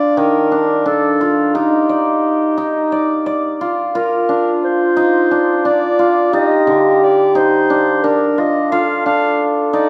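A shimmering, ringing hammered dulcimer sits up front, spinning arpeggios through this restless yet hopeful piece of contemporary chamber music in 7/8 at 176 BPM (counted in eighths). A dark, classical-style clarinet carries the melody up front with a distant, roomy quality, while a warm French horn, likewise distant and roomy, sounds a second line as the harmony moves from Ebmaj7 to Dm7 at 3.9 seconds. A wet recital-hall reverb surrounds this 9.9-second excerpt, cut from a longer work.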